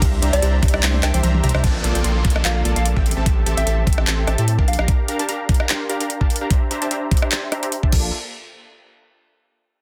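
A playful, euphoric future bass excerpt opens on a drop at 148 BPM in a swung half-time feel, with a knocking electronic kick, a trap kit of metallic hats, claps, rim clicks, toms and cymbals, a deep saturated sub bass, and punchy, airy supersaw stabs carrying sidechain pumping, tape grit, filtering and delay, while a tine-like thumb-piano pluck arpeggiates in the background until 1.6 seconds. A gentle, warbling FM synth lead carries the melody behind them, and after a drum fill, a brief kick dropout and a band accent, a downlifter enters at 1.6 seconds over chords moving from C9 through Am7 and Gm7/Bb. The sub bass falls away around 4.9 seconds, leaving the stabs over the up-front drums in a dry, dense, heavily limited mix.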